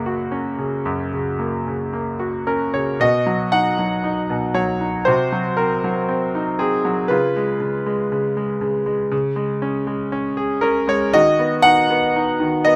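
A bright, brilliant concert grand piano sits up front with deep bass and natural tone, playing a tender, lyrical classical solo in B major at 59 BPM in 4/4 with rubato feel, ranging from F#2 to F#5 through chords from F# and B to Cm7b5, C#7 and B/D#, captured by close, detailed microphones with light reverb and tuned to A4 = 436 Hz in this 12.8-second excerpt cut from a longer piece.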